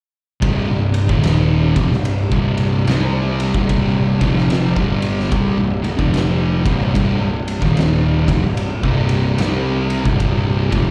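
Heard through a club's PA with moderate room reverb, this heavy, sludgy stoner and doom metal excerpt swings in 4/4 from 0.4 seconds on. An oversized, low-tuned drum kit sits up front, gritty and saturated, with a punchy kick, fat snare and ride cymbal, while two thick fuzz guitars churn the riff, one dark and set in the background, the other warm, over a growly, overdriven electric bass with tube saturation. Far beneath, a mellow tonewheel organ holds round, clean sustained chords with key click, chorus vibrato and a fast rotary speaker, very quiet in the mix.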